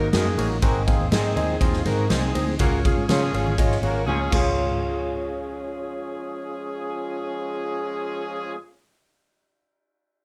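A gritty, punchy garage drum kit sits up front in this uplifting, danceable 1960s-style soul excerpt, playing until 4.4 seconds, partway through a fill that begins at 4.1 seconds, with very quiet, high-tuned congas alongside until 4.8 seconds. Round, foam-muted fingered bass sits under a barky, overdriven tine electric piano with phaser, while a tonewheel organ holds clean sustained chords through a slow rotary speaker, complete with key click. A smooth-topped horn section doubled in octaves carries a second line, and a twangy, slightly broken-up guitar adds stabs in the background, inside a moderate studio reverb.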